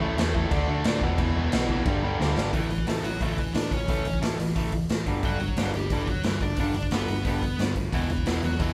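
A crunchy, bright overdriven guitar riff opens this rebellious punk rock excerpt, joined by a darker, sludgy distorted guitar sitting in the background and a round, hollow-body short-scale bass played with a pick. A raw garage drum kit joins almost at once, up front with a punchy kick, a medium-tuned snare, hi-hat and crash, its saturated, gritty sound pumping in a bright stone room with a rolled-off top. A drum fill at 2.2 seconds leads into a new section at 2.5 seconds, where the sludgy guitar drops out and a dark, smooth overdriven lead guitar takes up the melody above the riff. The sludgy guitar returns at 7.9 seconds as the harmony lands on E5, thickening the sound once more. It all feels energetic and straight-ahead, like a band playing live together in one room with light reverb.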